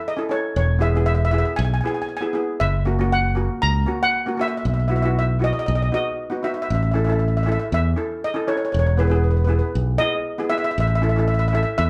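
Sunny and festive, this calypso excerpt moves at a straight 118 BPM in 4/4, centred on E major. A lead steel pan carries the melody from 0.1 seconds, its shimmering, metallic voice played with medium rubber sticks and sitting up front in the mix. Beneath it, a double seconds pan struck with hard rubber sticks supplies the accompaniment in a lower register, sounding bright and airy. A modern fingered electric bass enters at 0.6 seconds with a direct, punchy tone that stands forward alongside the lead pan. The chords travel from A to E, through F#7 and a Bsus4 that settles onto B, then back through A and E before returning to A. Everything is captured as a band playing live in one room with a moderate large studio reverb.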